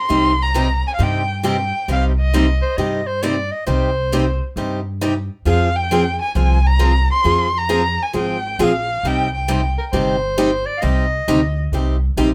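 A dark, nasal bowed violin opens this fiery, virtuosic excerpt of acoustic gypsy-jazz swing at 0.0 seconds, singing in C minor with vibrato and portamento over a bright, picked parlour guitar and a woody, thumpy pizzicato upright bass on gut strings, all at a swung 134 BPM in 4/4. A clear soprano saxophone enters at 2.6 seconds as a second line with scooped, jazz-style notes, and the violin returns at 5.5 seconds as the harmony moves from C minor to F minor and back. All four instruments sit up front in a moderate studio reverb.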